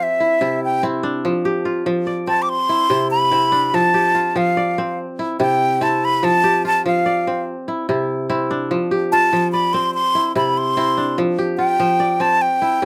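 Set in a rolling 12/8 at 97 beats per minute, counted in dotted quarters with a straight feel, this short passage of West African traditional music is cut from a longer piece and sits in F Lydian. A wooden flute carries the melody throughout, breathy and bright with lifted highs, tongued notes and expressive vibrato, ranging from E5 up to D6 and featured as a solo across the full 12.8 seconds. Beneath it, a kora plays fingerpicked arpeggios from C3 to D5, its acoustic strings ringing and crisp with a gentle warmth. The harmony sways steadily between C and F chords, with an F5 voicing at 1.2 and 11.2 seconds, giving the music a joyful, hypnotic pull. Both instruments sit up front, captured by close, detailed microphones in a dry space with little reverb.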